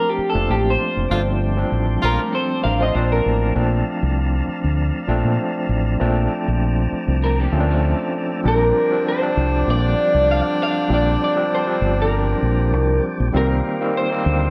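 Soul at 98 BPM with a light sixteenth-note swing and a silky, smooth mood, cut from a longer piece and set in a digital ambience, where a dark, slightly broken-up guitar through a small old amp carries the melody with subtle chorus and slapback echo, opening with a clean solo and returning at 8.5 seconds. Underneath, a bright, barky electric piano with fast tremolo sits up front beside a round, punchy fingered bass, while a fat tonewheel organ with key click holds sustained chords through a fast rotary speaker. A mellow horn section in octave doubling adds pop-style stabs, and a second, lo-fi guitar plays a short riff with ensemble chorus, over chords moving from G7sus4 to Bbmaj7, Bb69 and F9sus4/C.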